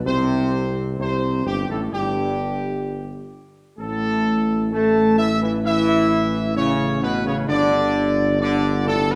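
Classical brass chorale, majestic and regal, in which a mellow trumpet section carries the melody up front with a distant, roomy quality, touching A5 at 3.8 seconds before settling on G5 at 7.5 seconds. Beneath it, a dark French horn section holds sustained chords in the background, while a warm trombone section adds present, soft-attacked harmonies with light vibrato. A mellow tuba anchors the bass with a smooth top, and the whole excerpt sits in a wet recital hall reverb.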